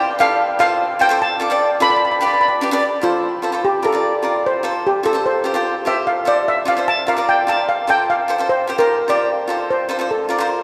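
A straight 4/4 calypso pulse at 148 BPM in F major drives this bouncy, sunny fragment of a longer piece, where an up-front lead steel pan with a shimmering, metallic tone, played with medium rubber sticks, carries the melody and takes a solo from 2.8 seconds over crisp, picked acoustic cavaquinho accompaniment, all set in the long, wet reverb of a church or concert hall.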